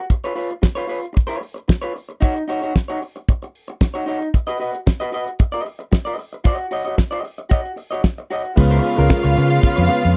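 A damped 1970s drum kit sits up front in this driving, danceable disco excerpt at 113 BPM, with a fat snare, tight kick, dark cymbals and a rolled-off top end, while a slightly broken-up, lo-fi electric guitar plays accompaniment over Db7, Ebm7 and B/F# chords. At 8.6 seconds the band fills out: a round, amped fingered bass up front, a concert grand piano with deep bass on accompaniment, a woody violin section bowing a second line with vibrato, and a lush symphonic string section holding sustained chords in the background. The recording is close, dry and 1970s in style, with little reverb.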